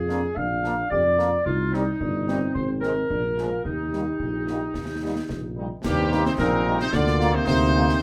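A short cut from a proud, spirited military-style march for wind band in Eb major at 110 BPM in 2/4 opens with a smooth-topped woodwind section, a soft-attack euphonium with light vibrato and a mellow, up-front tuba, joined almost at once by a bright, tight trumpet section carrying the melody over a vintage-toned French horn section, a concert snare, bass drum and clash cymbals with dark cymbal colour. The chords move from Bb7 through Cm and Ab to Eb, and at 5.8 seconds a new section begins with a trombone section sustaining chords in the background before the harmony settles on Bb7/D. The band is heard from further back in a studio with a wet reverb, though the drums themselves come across close and dry.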